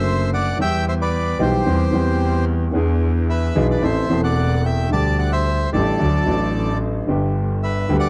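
Tango at 111 BPM in 4/4 with a rubato feel and a tense, sultry mood, this brief cut from a longer piece sets a reedy, close-miked bandoneon melody with plate reverb over smooth, vintage grand piano accompaniment and a single bowed double bass whose biting, intense vibrato anchors the low end, moving from D/F# through Em, E7 and Am to a Dsus4–D resolution onto G, all framed by a dark production and light room reverb.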